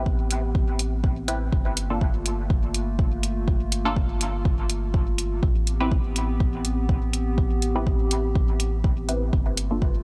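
A steady 4/4 pulse at 123 BPM with a light 16th-note swing drives this meditative, hazy dub techno excerpt, carried by an up-front, tape-warm electronic kick drum and hi-hat that sound re-recorded in a small room. Beneath them a deep, clean, smooth pure sine sub bass sits up front in the mix, while a muted, detuned filtered dub chord stab with phaser and dub echo plucks dark chords and a warbling, nostalgic lo-fi pad holds sustained chords with chorus and its own reverb, both breathing with sidechain pumping. The harmony moves between Am9 and Gm9 in a dry, close-sounding mix.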